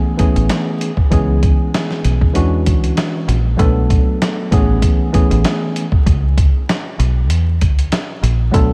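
A gritty, compressed sampler-style drum kit with a thumpy kick and a medium-tuned snare anchors this reflective boom-bap hip-hop fragment, cut from a longer piece, joined at 0.4 seconds by a round, dark, foam-muted fingered electric bass and layered over a worn, slightly out-of-tune tine electric piano that carries a cassette-tape tint from the start, all set in light reverb under a veil of vinyl crackle.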